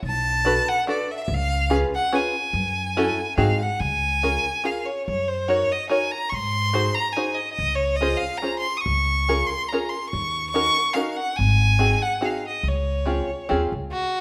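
Heard in a moderate recital-hall reverb, this bittersweet, nostalgic musette waltz in 3/4 is a short excerpt from a longer piece, with all three players up front. A clear, smooth violin carries the melody with vibrato and even bowing, while an open-back banjo fingerpicks twangy, plunky, percussive accompaniment and an upright bass plays woody, thumpy pizzicato on steel strings. After a brief minor-mode opening, the harmony turns to a brighter major tonality at 3.8 s and moves through seventh and sixth chords until the bass stops at 13.9 s.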